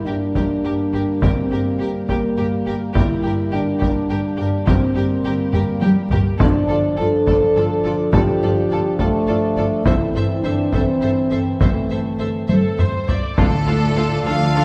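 Up-front, vintage-toned taiko drums struck with hard sticks drive this dramatic, heroic cinematic orchestral cue at 69 BPM in 6/8 and G dorian, beneath mellow French horns and tight trombones holding sustained chords, very quiet calf-headed timpani, a violin melody over a lush second violin line, background violas, soft-attack cellos and woody double basses, set in a church-like hall reverb, with a studio string section and a clear, distant trumpet stab arriving at 13.4 seconds as the excerpt moves to a D minor chord.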